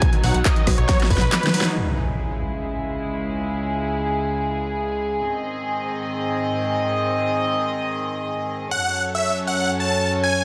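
Uplifting trance at 138 BPM in C# minor, euphoric and soaring, opens with a huge, detuned supersaw lead, a bright unison pluck arpeggio, a punchy analog bass and an overdriven kick and big-room kit with a huge snare, the synths and hats pumping together until a drum fill and a band accent at 1.6 seconds hand over to an electronic impact at 1.8 seconds. From there, the reedy, gut-string studio strings, present from the very start, sustain chords from C#m through G# to F#m. At 8.7 seconds the phased supersaw melody returns with a catchy, square-wave pluck lead sitting high in the background, the whole dreamy mix soaked in plate reverb.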